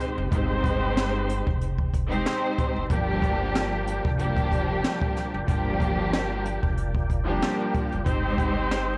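Boom-bap hip-hop in a reflective, dark mood, cut from a longer piece, where an up-front bowed string section with vibrato, portamento and a cassette-tape haze carries the accompaniment over a small-room brush drum kit with a boomy kick and high-tuned snare, a woody pizzicato upright bass, and, from 2.9 s, a mellow, round tonewheel organ holding background chords through chorus vibrato and a slow rotary speaker, all beneath a steady layer of vinyl crackle and light reverb.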